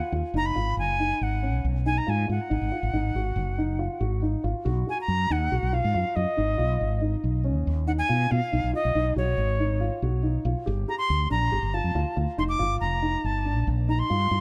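A straight 7/4 pulse at 140 BPM drives this bright progressive band piece, cut from a longer work, where an airy, reedy jazz flute with vibrato and tongued chiff carries the melody up front through delay, a dark baby grand piano with audible action noise and short sustain plays intimate arpeggios with delay, and a round, direct fretless electric bass enters at 0.1 seconds, with the harmony later moving to B and then Gmadd9, all set in a lightly reverberant, warm production.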